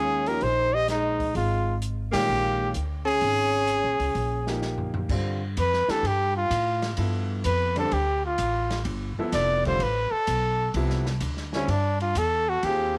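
Hypnotic and spiritual, this modal jazz excerpt swings in 4/4, with a clear, close-miked trumpet carrying the melody up front while a vibrato-tinged alto saxophone adds a second line until 4.6 seconds and a natural-toned grand piano supplies accompaniment. A woody, thumpy pizzicato upright bass with transformer saturation anchors the low end. The band hits an accent at 2.1 seconds, and an airy, polished drum kit with dark cymbals and a boomy kick plays a fill before the trumpet takes a solo from 5.1 seconds as the harmony shifts from Eb9sus4 to G9sus4. The horns and piano carry a cassette tape character, all set in a small room with light reverb and the intimate feel of a home recording.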